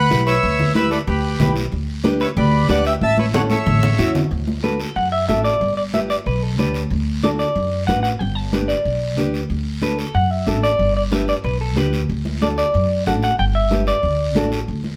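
Festive and sunny, this 185 BPM cumbia in D major opens with a reedy accordion melody up front, shadowed from the start by a second line on a dark, clean semi-hollow electric guitar. The accordion stops at 4.1 seconds, and a drum fill then hands over at 4.3 seconds to that guitar's solo, carrying to 14.7 seconds over woody pizzicato upright bass, fingerpicked nylon-string guitar with audible finger squeak, ringing hard-handed congas in the background and a raspy, close guiro, all played live in one room with a wet studio reverb.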